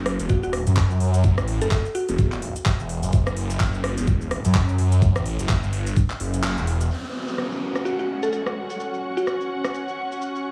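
Aggressive and gritty, this excerpt of bass house at 127 BPM in F# phrygian rides a swung 16th feel, driven by a thick, swirling detuned saw bass with phaser, overdrive, sidechain pumping and a filter sweep, alongside a knocking electronic kick and a garage kit of handclaps, metallic hats, rim click and shaker under low-pass filtering. A woody, round mallet-like synth pluck with chorus and digital delay appears from 0.3 to 2.3 seconds and returns near the end, while the kick drops out at 6.4 seconds on a band accent. At 6.9 seconds the bass gives way to a dark, veiled, con sordino string section with sidechain pumping and a downlifter over F#5, all set in light reverb and digital ambience.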